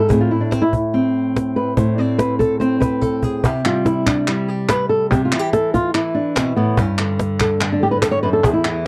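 A thumb-plucked nylon-string flamenco guitar sits up front and carries the melody from E2 to D5 over Am, C and Gsus2 in this passionate, intense flamenco excerpt at 144 BPM in a straight 4/4. A snappy cajon with snares, played with soft hands and close and dry, drives the groove and adds a drum fill at 2.6 s, while crisp, band-limited palmas hand claps with a vintage edge join at 3.5 s. The whole has the dry, close sound of a 1970s-style studio recording with a light touch of reverb, and it is cut from a longer piece.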